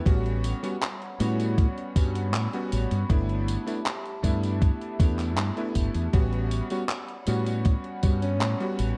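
A warbling, detuned pad opens this faded, dreamy vaporwave excerpt at 79 BPM. At 0.1 seconds it is joined by a bright, clangy electric grand piano through analog chorus and tape echo, a round, punchy fretless bass up front, a thumpy electronic kick, and a sampler-style drum machine of handclaps, hi-hat and tambourine bathed in gated reverb. The chords move from A13 to G69 and back to A13 in a dark, tape-warm room. An alto saxophone with vibrato and 12-bit sampler grit sits in the background. It touches the opening moment and surfaces again near 8.2 seconds, just as the kick drops out.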